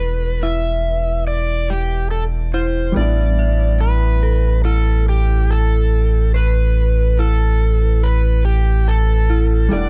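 Smoky and brooding, this trip hop excerpt at 71 BPM swings gently over Em11 and A9sus4 as an overdriven slide guitar carries the melody with 12-bit sampler grit and tape echo, a felt-muted upright piano with audible action noise and harmonic tremolo sits softly in the background, an eerie, inharmonic FM synth bell arpeggiates through chorus, low-pass filtering and digital delay, and a round, deep sine sub bass sits up front, all wrapped in dark digital ambience and vinyl crackle.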